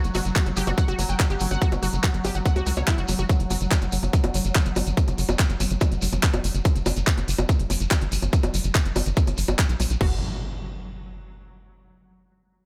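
This psychedelic trance passage, cut from a longer piece, drives along at 143 BPM in a straight 4/4 with a driving, alien mood over an F#5 chord. A tight, punchy sequencer bass of sawtooth and square waves with ring modulation sits up front beside an electronic kick drum that enters at 0.4 seconds, tight and tape-warm, re-recorded in a large room. Filter sweeps run through both the bass and a pulsing, tempo-synced texture of detuned triangle tones, which holds sustained chords with slow attack, chorus, built-in reverb and sidechain pumping. A garage drum kit layers crisp hi-hats, handclaps, bongos and crash cymbal, while a grainy acoustic shekere adds a live-room shimmer. A lush, warbling unison pluck, bright and vintage with tape echo and sidechain pumping, carries a riff that drops out at 3.3 seconds and returns only briefly near the close. The chord gives way at 10 seconds, and an up-front electronic impact lands at 10.1 seconds, all in a dry mix with little reverb overall.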